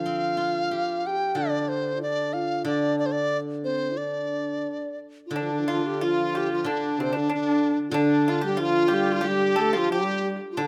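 Chinese traditional chamber music, graceful and tender, moving in a free, rubato 2/4 feel in this short excerpt from a longer piece. A reedy large dizi carries the melody up front with a buzzing membrane, crisp attack and vibrato, while a mellow, distant French horn sings a second line and a silvery, ringing steel-string zither accompanies under light reverb. At 5.3 seconds a husky bowed horsehead fiddle joins with portamento, and a bright, percussive pipa adds its dry, fingerpicked voice just after.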